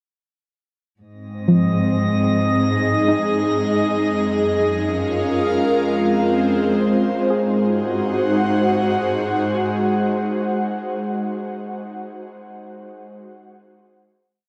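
A lush cello section opens this peaceful ambient piece at 1.0 s with a sustained root bass colored by tube saturation, fading out by 7.3 s as an airy, breathy pad takes the foreground with slowly shifting chords through Ab, Gbmaj7 and Fm at 76 BPM. A soft, round pluck traces quiet, dark arpeggios in two unequal loops that drift against each other, while a glassy texture of drifting overtones holds a high note and fades, and a bright, tense bowed-like drone sits in the background. The whole piece ends on a final Ab7 chord, steeped in a huge, wet reverb with a 7.7-second tail and a dark, warm production.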